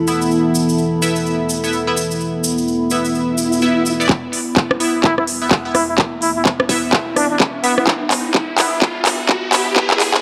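Swung sixteenths drive this gritty, aggressive bass house excerpt, where a moody, detuned analog pad, a nasal band-passed sawtooth chord stab with phaser and delay, and a warbling, nostalgic tape-like pad all pump under sidechain while a grainy, distant shaker ticks until a background swell and riser build from 3.3 seconds into a punchy kick and crisp big-room kit of handclaps, hi-hat and rim click at 4.1 seconds, with a close-miked, plunger-muted trumpet adding bright wah-wah jazz phrases from 5.0 seconds, all set in a lush hall reverb with a dark production sheen.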